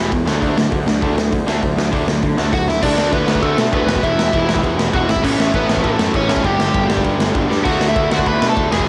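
Punk rock with an energetic, rowdy drive: up-front raw garage drums with a boomy kick and gritty, saturated room sound push along under a growly fuzz bass, a background distorted guitar riff with cassette-tape grit, a very quiet second distorted guitar, and a double-tracked crunchy guitar that drops out at 2.7 seconds and returns at 7.6, while a bright overdriven lead melody with tape echo comes in up front at 2.5 seconds, all captured as a dry home cassette recording cut from a longer piece.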